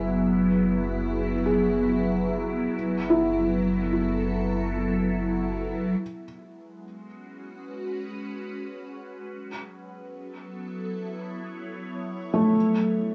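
Drifting in free time, this reflective, melancholic ambient excerpt unfolds over a slow stack of suspended and minor chords, moving from F#9sus4 and B7sus4/F# toward G#m, F#m7 and a closing E5. An evolving wavetable pad carries the sustained harmony throughout, its detuned unison voices morphing with ring modulation, a phaser and ensemble chorus, bright and up front, with a filter sweep across its first half and a fade-in across its second. A deep, round sub bass holds a single low note beneath it before stopping at 5.9 seconds. From 1.5 seconds a felt-muted upright piano plays soft, intimate arpeggios, dark and mellow with audible action noise and a tape echo, returning briefly at 12.3 seconds. Wet small-room reverb and the texture of a home cassette recording wrap the pad and piano in a hazy, close atmosphere.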